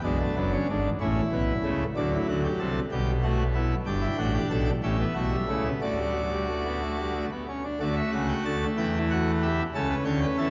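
Stately and elegant, this baroque-style four-part fugue for solo pipe organ moves at 62 BPM in 6/8, counted in dotted quarters. The full organ sits up front with mixtures drawn, giving a majestic, brilliant tone with baroque voicing and an audible chiff at the start of each pipe's speech, spanning F#1 to A5. It opens in B minor on a rich Bm13 chord, then passes through A, D7 and G/B before settling into D major from 3.9 s by way of Em7/G and A7. A new section begins at 7.8 s, turning through Em toward A7/C# as the short fragment of a longer piece breaks off. A five-second cathedral reverb surrounds the instrument, and the dark production lends the grand sound a sense of vast stone space.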